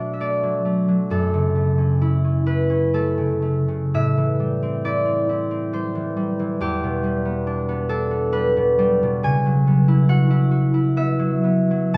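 This classical solo harp piece has a mysterious, gentle mood and moves in a flexible, rubato 3/4 at roughly 58-71 BPM. A single concert harp carries everything, fingerpicked and ringing, sitting up front with a warm acoustic tone that spans from E2 up to G#5. The harmony drifts through a chain of minor seventh chords, starting on Bm7 and passing through F#m7, Am7 and Em7 before settling on C#m7 near 9.2 seconds. The instrument is tuned slightly low, with A4 at 436 Hz, and a moderate stone-room reverb lends the notes a softly echoing halo. This brief excerpt, lifted from a longer work, lasts 12 seconds.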